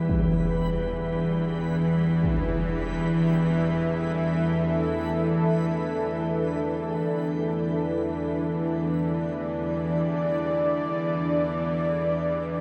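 A string-like, tense bowed drone sits up front from the first moment, joined at 0.1 seconds by a huge, dark impact and at 1.1 seconds by a deep, moody analog pad fading in over a Dsus2/E chord, while a reversed, dreamy granular texture shimmers faintly beneath in this desolate, cavernous dark ambient drone in free time, steeped in huge reverb and cut from a longer piece.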